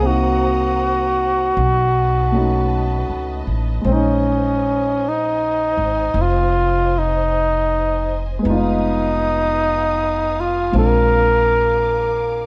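Bathed in light reverb, this 12.5-second cut from a melancholic, intimate jazz ballad in Bb minor drifts at 52 BPM with a gentle swing, as an up-front, mellow flugelhorn carries the solo melody with light vibrato and scooped notes over a natural-sounding grand piano, a woody, thumpy pizzicato upright bass placed up front, and a veiled, con sordino bowed string section holding lush sustained chords, while the harmony moves through Cm7b5, B9, Bbm11 and Fm7b5 to Bb7.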